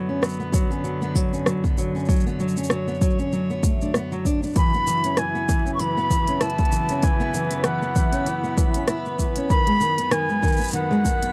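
Folktronica at 97 BPM with an autumnal, intimate mood, built on a nasal, gut-string quartet holding sustained chords and an up-front fingerpicked steel-string acoustic guitar playing arpeggios through tape echo, over an overdriven electronic kit of smooth hats, rim click and shaker and a deep, overdriven kick, with an airy silver flute carrying the melody from 4.6 seconds and a reversed, granular, dreamy texture swelling in the background from 5.7 seconds, all in a dry, close 1970s-style studio sound.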